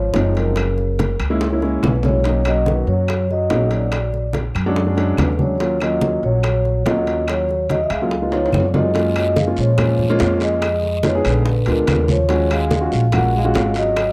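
A mellow, dark vibraphone played with soft mallets carries the melody in this driving, fiery Afro-Cuban jazz excerpt, its metallic notes ringing smoothly over a straight 4/4 groove. Up front, a woody pizzicato upright bass on steel strings anchors the low end, while an intimate grand piano with audible action noise supplies shadowy accompanying chords. A very quiet trombone adds a second line with vibrato and scooped notes. The percussion is layered: low-tuned, thick-skinned congas under soft hands and tight, high-tuned bongos under hard hands sit in the background, ringing metal-shelled timbales sound distant, and vintage, band-limited claves tick woodily underneath. Drum fills land at 1.4 s and again just before the harmony moves to a new section at 9.0 s, where a close, raspy guiro joins from 8.9 s. The sound is a dry, close, 1970s-style studio recording with a small-room ambience.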